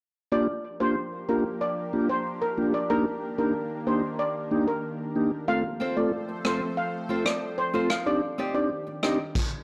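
Dancehall at 93 BPM in G minor, this short excerpt feels hypnotic and bouncy as it moves through Gm7, Ebmaj7, F and Cmadd9. A mellow steel pan carries the melody from 0.3 seconds, its shimmering metallic tone softened by rubber sticks and trailed by analog delay. Alongside it, a flute-like tonewheel organ plays accompaniment through a slow rotary speaker with gentle vibrato, sitting up front with sidechain pumping. A lush, detuned sawtooth pad swells in slowly behind them with chorus, holding thick sustained chords that also pump. A small fingerpicked nylon-string guitar adds arpeggios from 5.8 seconds, and a vintage brush kit joins at 6.4 seconds with a punchy kick, rim clicks and dark crash cymbals before the music stops at 9.4 seconds. The sound is dry and gritty with transformer saturation, set in a moderate recital hall reverb.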